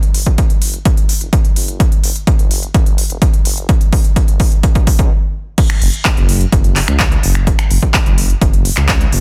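Progressive house at 127 BPM, uplifting and expansive, this fragment of a longer track opens with a build-up where an overdriven big-room drum kit of crisp, pumping hi-hats, crash cymbal, finger snaps and handclaps, joined almost at once by a dark, rumbling detuned saw bass with a high-pass filter and sidechain pumping and a punchy, up-front electronic kick, rolls into a drum fill from 1.8 seconds, until a brief stop at 5.1 seconds gives way at 5.6 seconds to the drop, driven by that kick in a dense, heavily limited modern mix with little reverb.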